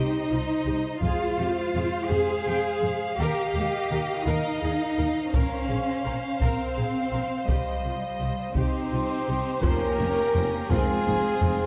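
This cinematic, epic orchestral passage opens with strings and French horns together: a violin section carries the melody over a second violin line, violas fill in beneath with lush vibrato, and the horns hold distant, roomy chords in F minor. A cello section sits up front in the bass with expressive portamento, joined at 0.3 seconds by woody bowed double basses, and hard-stick taiko drums strike in close at 1.0 second to drive the slow 6/8 pulse at 56 BPM. The harmony moves from C minor through F minor, E-flat add nine and B-flat minor add nine before returning to C minor and F minor, giving the music a heroic, relentless weight. At 8.6 seconds an airy flute ensemble adds a high second line in the background while a solo trumpet punctuates with stabs, and a mellow solo tuba anchors the low end from 9.6 seconds. The production is dark and warm, set in a moderate scoring-stage reverb, and the piece is cut from a longer work.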